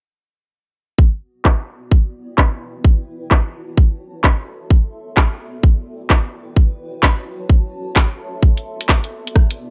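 A tight, tape-warm electronic kick sits up front in this late-night, skippy two-step UK garage piece at 129 BPM in B minor, swung on the sixteenths. A layered garage kit of handclaps, hi-hat and rim click joins it at 1.4 s, with its snare and hats low-pass filtered. From 1.8 s a mellow, blurred granular cloud pad of detuned triangle voices fades in low in the mix, slow to attack and bathed in its own reverb with sidechain pumping, while a moving notch keeps it evolving as the drums carry a filter sweep and the chords cycle through Bm, Em7, F#m7 and Am.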